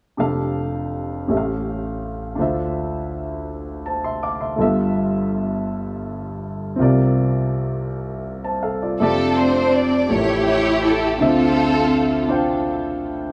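Slow gospel in 6/8 at 54 BPM in F major, reverent and uplifting, opening with a natural-sounding, up-front grand piano that carries the rich extended chords from 0.2 seconds to the end of this short fragment. At 9.0 seconds a lush, bowed studio string section takes the melody with expressive vibrato and a smooth top, coloured by tape echo, before dropping out at 12.3 seconds. A moderate echo-chamber reverb with a 2.2-second tail blends with a small room ambience around the ensemble.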